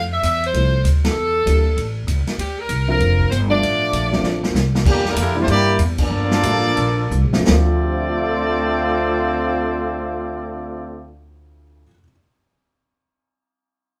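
An edgy saxophone section with vibrato carries the opening melody of this brassy, sultry big band swing excerpt in D minor at 166-195 BPM, over woody pizzicato upright bass, a vintage drum kit with a punchy kick and rolled-off top, and a dark, intimate baby grand piano with audible action noise. A tight trombone section with soft attack enters as a second line at 3.5 s, and after a drum fill a smooth-topped trumpet section takes over the melody at 4.9 s as the band slows down through 7.5 s. Band accents punctuate the passage, and the group plays live in one room with a brief, wet studio reverb.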